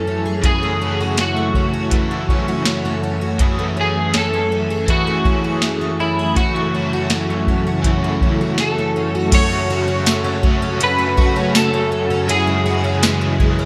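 Hazy and ethereal, this short dream pop excerpt in F# minor at 81 BPM sets a twangy, slightly broken-up electric guitar melody with chorus and delay over a swirling phased string machine, shimmering octave-doubled picked twelve-string acoustic arpeggios, a tremolo-soaked, double-tracked overdriven electric guitar and a soft vintage rhythm box with deep kick, crisp snare and gated reverb, all in a bright 1980s-style digital production with plate reverb, moving from F#m9 to F#m at 9.3 seconds.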